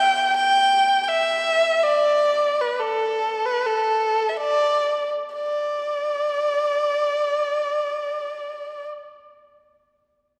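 This is a brief piece of Chinese traditional music for a small chamber ensemble, cut from a longer work and carrying a pastoral, graceful mood in a free, rubato feel. A single bowed erhu carries the melody from the start to 8.9 seconds, sitting close and up front with a clear, focused tone shaped by vibrato and portamento. A hammered dulcimer adds a second line only in the opening 0.8 seconds, heard as a bright, shimmering ring in the background. The playing slows through roughly the first 5.4 seconds before the music moves into a new section that carries on to the end. A wet concert hall reverb places the listener further back in the room, lending the ensemble a spacious, lingering air.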